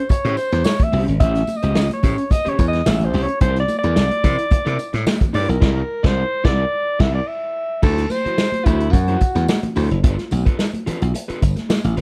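A breathy alto saxophone opens the excerpt with a playful, gritty funk solo at 109 BPM, its subtone and scooped notes carrying a vintage jazz flavour up front, as a glassy, bright slap bass and a roomy, distant drum kit with a punchy kick enter almost at once. A dark, slightly broken-up picked electric guitar comps over A7#9 and C9, while damped, high-tuned congas and a jingly tambourine sit in the background. The band hits an accent at 5.6 seconds before the harmony moves to D9 and G9, and the saxophone drops out at 9.8 seconds, leaving the rhythm section in a small room.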